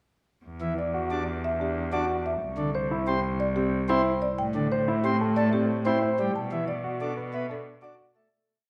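Bathed in a wet recital-hall reverb, this short minimalist classical piece in 6/4 feels urgent and hypnotic, built from repeated short cells. A rich, up-front bowed cello with vibrato holds long bass notes beneath the full, chiffy principal chorus of a chamber organ, while a warm grand piano spins arpeggios and a woody, round marimba played with soft mallets carries the melody over Em7, C, Am7 and Bm7. The music fades out from 6.4 seconds.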